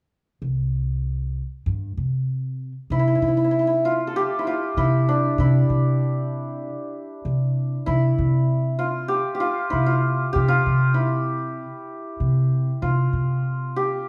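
Set in a straight, steady 4/4, this festive and passionate excerpt of Persian modal ensemble music moves in C dastgah mahur. Upright bass opens alone at 0.4 s, plucked pizzicato on steel strings with a woody, dark tone that sits up front and anchors the low register. At 2.9 s the santur enters with the melody, its hammered strings shimmering and ringing in a compact middle range above the bass. Both instruments stay close and present, heard as a band playing live in one room. A moderate reverb from a large studio lends the pair a sense of space, and the passage breaks off at 14.1 s as a fragment of a longer piece.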